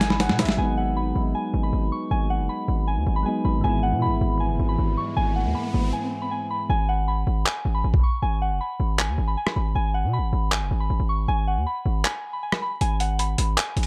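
A brief drum fill from a gritty, pitched-down sampler-style kit opens this melancholic, dark half-time trap excerpt in G# minor at 157 BPM, alongside a fleeting breathy, flute-like lead and a soft FM bell melody with chorus and tape echo. Round electric-piano-like keys carry the G#m7 and E chords over a punchy, saturated 808 bass, and an electronic riser enters at 4.5 seconds ahead of a short break. The thumpy kick, snare, rim clicks and claps return at 7.5 seconds with the hi-hats muted for much of that stretch, while the mellow bell keeps ringing through an echo-heavy mix with light reverb.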